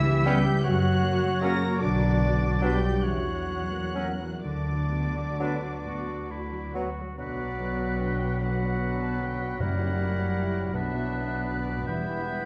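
Yearning and melancholic, this slow, rubato romantic orchestral passage in B minor and 6/8 sets veiled, con sordino violins singing the melody above a very quiet second muted violin line, over muted violas, cellos and double basses, with a ringing harp's arpeggios, a distant oboe, a bright clarinet, a silver flute and a clear bassoon weaving inner lines, a mellow French horn section holding very quiet chords, a dark trumpet adding soft stabs until 6.7 s, and hard-mallet timpani striking briefly at 9.6 s, all bathed in a recital-hall reverb.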